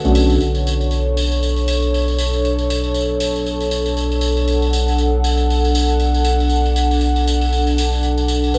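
A lo-fi home cassette sound, with vinyl crackle, a small room's ambience and a moderate spring reverb, wraps this short deep house fragment cut from a longer piece. The mood is deep and smooth, with a swung sixteenth-note feel. An airy, breathy pad sits up front, its detuned sawtooth and triangle layers carrying a noise texture, chorus and cassette-tape colouring as it sustains a Bm9 chord, while a filter sweep runs across it from 0.4 seconds to the end. Beneath it, a mellow synth bass with a fast attack, a hint of ring modulation and vibrato holds down the low end, also placed up front. A jingly, vintage-sounding acoustic tambourine plays throughout. A very quiet marimba struck with medium mallets appears only in brief touches at the very start and again at 8.5 seconds.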